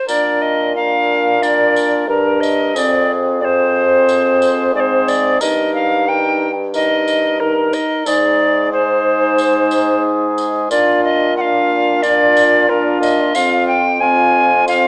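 Heard through a small speaker inside a moderately reverberant stone room, this cut from a longer renaissance-style consort dance moves at 90 BPM in Bb mixolydian with a festive, courtly air. An airy, up-front alto recorder carries the melody with tongued chiff and vibrato, while a mellow cor anglais sings a second line and a soft-attacked trombone fills in smooth accompaniment. Beneath them a warm bassoon holds the bass, and a close, jingly tambourine adds light percussion.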